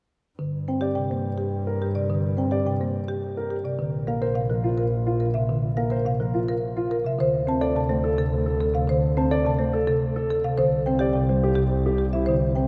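A straight 3/4 pulse at 106 BPM drives this hypnotic, urgent piece of minimalist classical pattern music in G dorian, which moves from Gm through Bbsus2 and D5 to Csus2. A rustic, boxy soft-mallet folk marimba and a dark, up-front bowed double bass, expressive with vibrato and portamento, begin at 0.4 s. At 0.7 s a woody, padauk-barred marimba with medium mallets carries the melody up front, and a mellow, vintage grand piano adds intimate arpeggios with audible action noise, the whole fragment set in a vast, echoing cathedral space.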